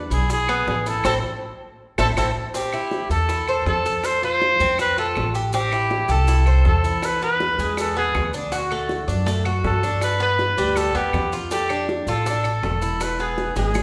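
A punchy, vintage-toned trumpet leads up front in this danceable Cuban son and guajira excerpt, playing a pop-style solo melody with vibrato. Beneath it, a pizzicato upright bass with a woody, steel-string tone sits forward in the mix, while a warm acoustic Cuban tres picks metallic arpeggios on its double strings, some of them octave-doubled. The percussion sits lower: round, low-tuned bongos played with soft hands stay in the background, mellow, grainy maracas fill in, and close, dry claves tick very quietly. A drum fill and band accent arrive between 1.0 and 2.5 seconds, leading into the longer main section, and another fill lands at 13.6 seconds. The performance rings out in a reverberant recital hall.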